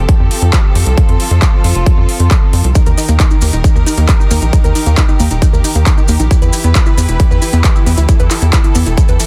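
A rich, bowed symphonic string section holding sustained chords opens this uplifting trance excerpt alongside a tight, driving sequencer bass, both pumping under sidechain while the strings sit behind a low-pass filter. Almost at once a punchy, overdriven electronic kick arrives up front at 135 BPM in a straight 4/4, joined by a layered big-room kit of handclaps and metallic hi-hats with a small room ambience. At 2.8 seconds a lush, detuned unison pluck enters with arpeggios, colored by cassette tape character and a dub echo, while grainy acoustic maracas sit in the background. The harmony moves from Fadd9 to Eb and then to Em, and the biting, intense strings carry a light vibrato over the mellow, square-edged bass. The mood is euphoric, and the dense, heavily limited modern master keeps the whole track loud.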